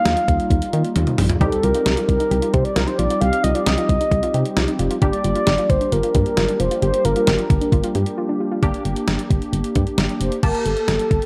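Nostalgic yet bright, this synth-pop excerpt moves at 133 BPM in a straight 4/4, with a horn-like, wave-folded synth lead carrying the melody with vibrato, tape echo and chorus over a punchy, detuned polysynth comp and a solid, round FM bass. A clean 12-bit drum machine with a thumpy kick and medium-tuned snare sits up front, marking a fill at 1.0 seconds and a break at 8.2 seconds, while a soft triangle-and-sine pluck plays gentle arpeggios in the background from 1.4 to 8.6 seconds. Chords move from Ebadd9 through Cm and Gm to Gmadd9, all wrapped in a dark production with light reverb.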